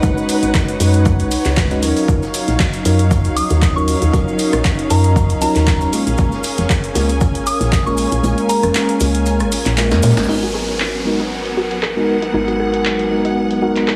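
Opening on a detuned sawtooth pad, gritty tine electric piano stabs with tape echo, a round woody FM bass and a rich bowed string section, all pumping under the sidechain, this moody, hypnotic deep house excerpt moves at 117 BPM with a swung 16th feel through Db9sus4, Ebm9 and Bbm7 chords. It is driven by a punchy tape-saturated kick, a filtered analog drum machine with claps, rim clicks and crash, and a very quiet acoustic jazz kit and grainy maracas. A pure, phased FM bell melody floats above from 3.4 s until it fades at 8.9 s, and the kick drops out before a drum fill leads into a new section at 10.3 s. There, over Abm9, a bright detuned pluck arpeggio with a filter sweep and a falling downlifter join in as the kit and maracas fall away, all beneath a heavily compressed, radio-like sheen and plate reverb.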